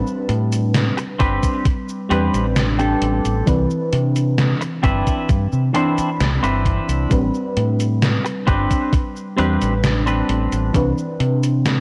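Dreamy and nostalgic, this vaporwave fragment drifts over a slow, straight pulse, with a soft, full-bodied FM electric piano bathed in lush chorus and analog delay, and a round, up-front dub bass played fingered beneath it, cycling between Am11 and Cmaj9. A gated 80s drum machine brings cabasa, hi-hat and an overdriven gated-reverb snare, joined at 1.2 seconds by a thumpy, overdriven electronic kick, while a bright, clean semi-hollow guitar riff enters at 1.0 seconds with subtle chorus and delay. Light digital ambience surrounds it all, and the sound carries the worn, warbling pitch drift of old cassette tape.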